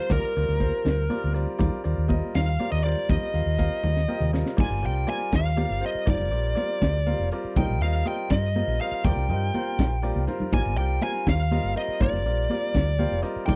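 A dry, close 1970s-style studio sound frames this soaring, slick stretch of electric jazz fusion in 6/8, cut from a longer piece. A smooth, overdriven lead guitar with slapback echo carries the melody up front beside a round, hollow-body fingered bass, while a brilliant concert grand piano supplies accompaniment and fills, including one at 6.8 seconds. A crisp drum kit with a high-tuned snare and punchy kick plays a fill from 3.8 seconds into the second section, and soft-handed, ringing congas sit in the background.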